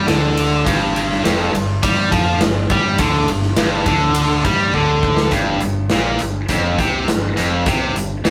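Powerful and swaggering, this short hard rock cut from a longer piece drives in straight 4/4 with a tight, bright, double-tracked distorted guitar riff up front over a growling overdriven fingered bass and a big acoustic rock kit with punchy kick, bright cymbals and a medium-tuned snare, all in a rough rehearsal-room sound with tube saturation and short studio reverb, as a drum fill at 4.7 seconds ushers in a new section at 5.3 seconds.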